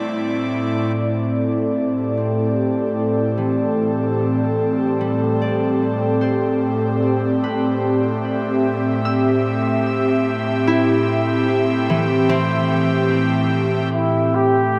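An airy, breathy synth pad with chorus holds sustained chords up front from the start while a ringing concert harp fades in with tape-echoed arpeggios in the background, and a mellow, distant flugelhorn enters with a short solo melody at 13.9 seconds over this reflective, spacious ambient cut at 74 BPM in A minor, moving from Dsus2/A to Am9 to Am7 in a vast cathedral reverb as the pad's filter sweeps.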